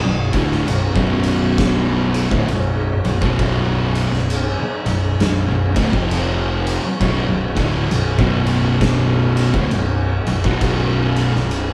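An up-front, oversized low-tuned drum kit with a punchy kick, medium-tuned snare and dark ride cymbal enters at 0.3 seconds to anchor this hypnotic, brooding stoner and doom metal excerpt at 66 BPM in B dorian with a swung 4/4 feel, while three picked fuzz guitars (one bright and double-tracked, one dark and very quiet, one warm) grind out a riff in the background over a round, overdriven fingered bass and a very quiet, full tonewheel organ holding sustained chords through a slow rotary speaker, the Bm harmony shifting briefly to F5 at 5.9 seconds before returning, all set in a moderate large-studio reverb as a band playing live in one room.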